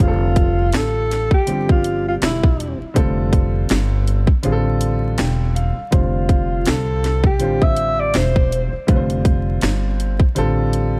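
Jazz-hop with a relaxed, warm mood, this short clip from a longer piece rests on a single Fmaj9 chord with a lazy swing in its 4/4 groove. An electronic, layered garage drum kit sits up front, its tight kick, cracking snare and warm hi-hats driving the beat. A woody pizzicato upright bass with steel strings holds down the low end, while an intimate upright piano accompanies with a smooth, vintage tone, long sustain and audible action noise, adding a brief fill at 4.8 seconds. Over the top, a jazz-style alto saxophone plays the solo melody with vibrato and scooped notes, sounding distant and roomy through tape echo before it drops out at 8.7 seconds. The production is dark and warm, wrapped in small room reverb and vinyl crackle.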